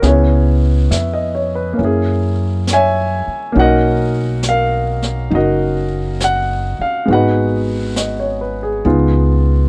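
Swung eighths in a slow 4/4 carry this melancholic, intimate jazz ballad excerpt, with a concert grand piano comping through chords that move from Dbm7 and Gb9 to Bmaj7, then Abm7 and Db9. The piano sits up front with a warm, deep low end and audible action noise, while a woody, thumpy pizzicato upright bass on steel strings shares the foreground and a brush kit with a high-tuned snare and hi-hat stays quieter behind them. All three parts play throughout, captured as a dry, close 1970s-style studio recording in a small room.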